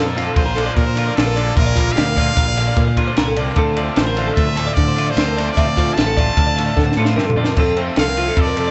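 Math rock with a midwest emo lilt, this bright, playful excerpt moves in an uneven five-beat metre and runs under nine seconds as a fragment of a longer piece. A brilliant, forceful trumpet carries the melody up front, close and punchy with pop-style vibrato. Two clean twelve-string electric guitars sit beneath it, one twangy and compressed in the accompaniment, the other playing arpeggios further back. A raw, double-tracked garage guitar with overdrive holds a riff in the background, while a growling fingered bass, also overdriven and punchy, anchors the low end. A compact cocktail kit joins at 0.2 seconds with dark cymbals, a high-tuned snare and a punchy kick, then plays a fill from 6.8 to 7.6 seconds that leads into the arrival of the F chord. The band sounds live together in a small room with a short reverb, and the top end is rolled off, giving the whole a close, rounded sound.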